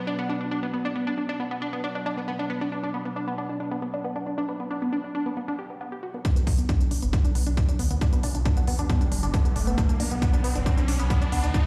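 A warbling, resonant analog drone with chorus and sidechain pumping opens this cut from a longer driving peak-time techno track in B minor at 136 BPM, joined at once by a tight, up-front sequenced sawtooth riff with phaser and dub echo; a punchy, tape-warm kick and smooth pumping hi-hats arrive at 6.2 seconds, with a thick, menacing detuned saw bass carrying tube saturation close behind, launching an intense, industrial build-up in which the riff's filter sweeps, an electronic riser enters at 7.8 seconds and a drum fill lands at 9.8 seconds, the mix sounding as if played on a big sound system in a bare room with large studio reverb.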